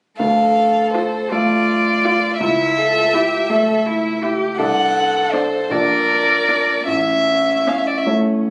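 Violin, cello and a clear baby grand piano begin together at 0.2 s in this yearning, elegiac fragment of a slow romantic movement for piano quintet, its 6/8 pulse uneven and pulled by rubato. The violin carries the melody up front with light vibrato, a soft, airy bow and an intimate closeness, while the focused cello sings a second line and the piano accompanies with natural, short-sustained tone. A rich, distant viola joins at 0.9 s, shading its part with vibrato and expressive portamento, all captured on a phone in the room with a light club reverb.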